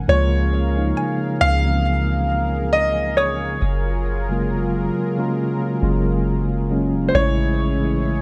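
Smooth and romantic, this contemporary R&B passage moves at a slow 68 BPM in 4/4 with a light swing on the sixteenths, set in Db major and cut from a longer piece. A clear, intimate concert grand piano carries the melody high in its range, its action noise audible and a digital delay trailing its notes, while a mellow tine electric piano supplies up-front accompaniment with a clean tone heard through built-in speakers. Underneath, a soft 808-style bass gives deep, round, dark notes with a fast attack that decays, and a smooth analog pad of detuned sawtooth and triangle with a sub octave holds sustained chords at a low level, blooming slowly under chorus with a long release. Between 1.0 and 4.0 seconds a woody, FM-built mallet-like synth pluck adds percussive sparkles in the background, treated with chorus and delay. The harmony moves from Db6 to Gbmaj9 at 3.6 seconds and lands on Amaj7 at 7.1 seconds, all set in a digital ambience.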